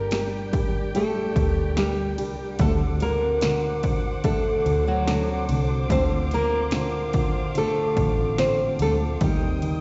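A fingerpicked nylon-string guitar carries the melody up front from the first moment of this heartbroken, longing pop ballad excerpt, its classical tone marked by audible finger squeak and a slapback echo. Beneath it, a woody upright piano holds a low accompaniment with its own slapback, while a background dreadnought steel-string guitar with fresh strings and a full-bodied sound fingerpicks arpeggios through slapback and digital delay. A lush, focused studio string section sustains bowed chords with vibrato high above. A dark, round, foam-muted vintage electric bass anchors the bottom, and at 0.1 seconds a punchy, layered electronic drum kit enters up front, its overdriven kick, snare and ride driving a straight 4/4 pulse. The harmony moves from Gm through D7 and Dm7 to Cm/Eb, and the whole performance sounds like a live gig heard through the venue's PA, with recital-hall reverb and dulled highs.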